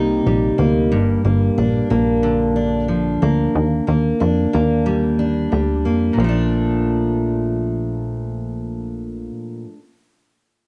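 Indie pop with a nostalgic, dreamy mood and a light swing, this short cut from a longer piece pairs a warm, up-front fingerpicked dreadnought acoustic guitar, colored by subtle chorus, warbly pitch drift and cassette tape character, with a punchy, plucky analog bass whose fast-attack, decaying filter-pluck tones carry a funky, wave-folded, ring-modulated bite. Moderate reverb frames the homespun cassette recording as the chords move from Cm7 through Gm7 and Ebmaj7 before settling on Bbmaj7 at 6.2 seconds. The bass stops at 9.3 seconds, leaving the guitar to ring on until 9.8 seconds.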